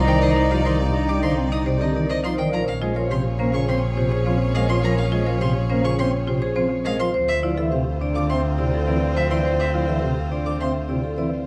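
Classical minimalist pattern music at 104 BPM in a straight 4/4, this hypnotic, meditative excerpt moves from Cmadd9 to Bbm7 at 2.5 seconds and Dm7 at 7.1 seconds. A ringing vibraphone carries the melody over a mellow soprano saxophone second line in the background, while a woody, dry marimba and a focused solo violin play arpeggios alongside sustained, intense chords from a chamber violin section. Sparkling pipe organ flute stops with a baroque chiff supply the accompaniment, and a rich bowed double bass sits up front, all inside a dark production with a large studio reverb.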